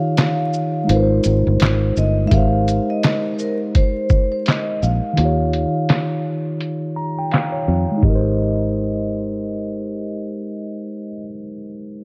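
A loping 84 BPM groove in 4/4 with a 58% swing on the sixteenths drives this nostalgic, dreamy lo-fi hip hop cut in Ab major, lifted from a longer piece and tuned to A4 = 443 Hz. A mellow, clean tine electric piano carries the accompaniment across all 12.0 seconds through a cassette-tape, low-pass haze, moving from Eb9 to Ab6, then to Abmaj9, back through Eb9 and home to Abmaj9, with a fill of its own between 6.6 and 8.0 seconds. The sampler-style drum kit sits up front from 0.2 to 8.2 seconds, compressed, pitched down and muffled with 12-bit grit, pairing a thumpy kick and medium-tuned snare with hi-hat, shaker and handclaps, though the kick drops out from 5.2 to 8.0 seconds. A fingered electric bass joins at 0.9 seconds, dark, foam-muted and punchy, holding the low end between G1 and F2. Above it all, a vibraphone struck with medium mallets sings a metallic, ringing melody between Bb4 and F5, its slow motor vibrato softened by a low-pass filter and tape echo. 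The whole mix is dark and warm under vinyl crackle, with light reverb and a digital ambience framing the parts.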